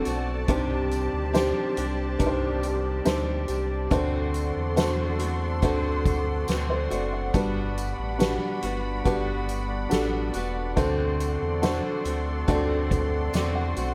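A straight 4/4 pulse from a soft-mallet drum kit with a boomy kick and fat snare, plus a jingly tambourine tucked in the background, carries this tender, hopeful pop ballad excerpt, where a mellow, boxy felt-muted upright piano with audible action noise, a deep, up-front sub bass with octave, picked steel-string acoustic guitar arpeggios with finger squeak and a close, bowed string section with vibrato and sul tasto softness move through Cmadd9, D7 and Gmaj7 in an intimate small room.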